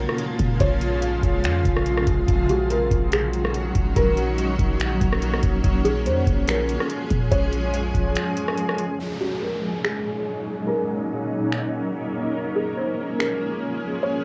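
Hazy, cassette-soaked home recording with light reverb frames this melancholic, half-time cloud-rap fragment, where a felt-muted upright piano with audible action noise and tape echo plays a soft, boxy melody over a blurred, detuned granular pad that pumps beneath the beat, a clean, boomy 808-style bass that stops at 8.2 seconds, a booming analog drum machine whose deep kick, metallic hats, finger snaps and rim clicks carry 12-bit sampler grit, and a faint electronic downlifter as a filter sweep runs from 9.0 seconds.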